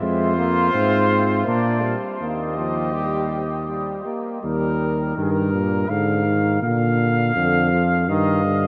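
Solemn and contemplative, this short excerpt from a longer classical canzona for brass ensemble moves in an imitative style at 82 BPM in 3/4, centred on E-flat major. A mellow cornet carries the melody up front with light vibrato, while a mellow trumpet, also touched with light vibrato, sings a second line before falling silent at 4.0 seconds. Beneath them a clear trombone supplies accompaniment, and a punchy tuba anchors the bass, sitting forward in the blend. The harmony drifts from F minor through B-flat to E-flat, and the second half, beginning at 4.4 seconds, retraces that path with some chords inverted. A huge, wet reverb places the group far off in a vast, echoing hall, giving the brass a distant, roomy glow.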